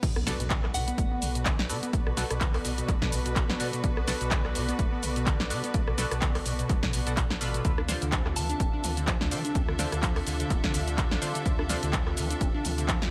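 A swung 4/4 acid house groove drives this hypnotic excerpt, with a punchy, tape-toned electronic kick and an analog drum machine of snare, handclaps, hi-hat, rim click, cabasa and crash sitting up front. Beneath it, a rubbery, resonant square-wave acid bass riff with overdrive, chorus and tape echo rides over a round sine sub bass, while a thick, detuned sawtooth pad and a smooth, bowed studio string section pump with the sidechain through the Bm7 to Dm7 change. A nasal, band-passed chord stab with phaser sits in the background from 0.3 seconds, a pure FM bell adds brief phrases at 0.7 and 8.4 seconds, and a very quiet electronic swell and impact fills the first 1.9 seconds.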